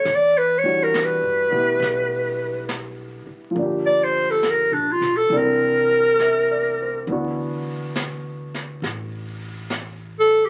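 A swung eighth-note pulse in four carries this slow, late-night jazz ballad with a romantic glow, supported by a vintage brush kit whose brushed snare and hi-hat sound warm and rolled-off at the top. A pizzicato upright bass with a woody, growly tone sits low beneath it, joining the drums at 0.1 s. A dark, mellow grand piano comps with short sustain through a progression that moves from Em9 to Gm7, C9 and D69. Over this the clarinet takes a solo for the whole passage, bright and forceful, with vibrato and a jazz phrasing that stays up front in the mix. The sound is steeped in a small, reverberant room and the crackle of a very old 78 rpm record, and the clip is cut from a longer piece, running to 10.5 s.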